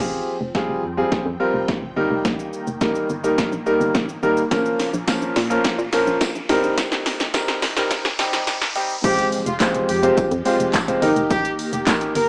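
A clear baby grand piano sits up front in this bittersweet, energetic dance-pop clip in F minor at 106 BPM, its intimate, natural tone carrying audible action noise and long sustain while sidechain pumping makes its chords breathe. Beneath it, a hollow, organ-like FM bass with a fast attack and dark decay holds the low end, pumping in the same way, while a very quiet, evolving supersaw swell of detuned sawtooth unison adds full-bodied sustained chords shaped by a filter swell and a moving notch. A punchy analog drum machine arrives at 0.5 s, with kick, snare, handclaps, hi-hat, shaker and crash, its short room on snare, clap and hats set inside a large-room re-recording; a jingly, close and dry tambourine slips in faintly at 4.5 s. The first nine seconds are a build-up with a drum fill, a filter sweep and a faint electronic riser over Fmadd9, Eb, Bbm and Cm7, before the drop at 9.0 s brings an impact and a tight horn section playing the melody with light vibrato and a smooth top. 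The whole thing has the rough feel of a home demo, with small room ambience, a high-pass filter and a small-speaker sound, and it is cut from a longer piece.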